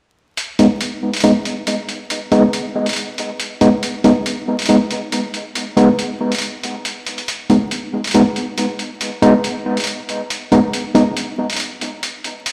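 A half-time 4/4 pulse at 139 BPM sets the pace for this brooding, meditative deep dubstep fragment in G# minor, cut from a longer piece. An electronic hi-hat enters at 0.4 seconds and runs to the close at 12.5 seconds, sitting low in the mix with a sampler-style, compressed, pitched-down character and a tape-warm grit. At 0.6 seconds an overdriven tine electric piano arrives up front with stabs between G#3 and D#4, pushed through a combo amp with fast tremolo, a low-pass filter and dub echo, and a filter sweep shapes its sound. The piano drops out at 11.0 seconds, and the whole passage rests on a single G#m chord. The recording sounds as if played on a big sound system in a bare stone room, with a moderate echo chamber reverb of about 2.0 seconds and a layer of vinyl crackle adding a dusty, cavernous atmosphere.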